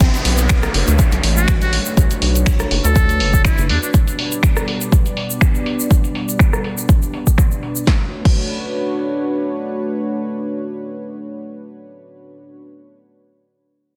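A dense, heavily limited deep house excerpt in B minor at 122 BPM, with a light digital ambience and a hypnotic, warm mood carried by a 4/4 groove swung at 55% on the sixteenths. An overdriven, layered electronic kick sits up front with a deep thump, joined by a punchy, tape-warm analog drum machine of crash cymbal, finger snaps, hi-hat, rim click and soft-clipped snare, both running until 8.4 seconds while a filter sweep moves over the drums. A rubbery, hollow square-wave bass with a resonant filter pluck pumps against the kick for the opening 3.8 seconds, as a grainy, bright egg shaker and an electronic downlifter add texture beneath. A dark analog pad built from sawtooth and triangle with a sub octave holds sustained chords through chorus and sidechain pumping, moving from Bm9 to G/B and back to Bm9, and it lingers alone to 12.6 seconds. From 1.4 seconds a close-miked trumpet with a metal mute plays a brief jazz-style solo, buzzy and thin with light vibrato and scooped notes, trailed by dub echo.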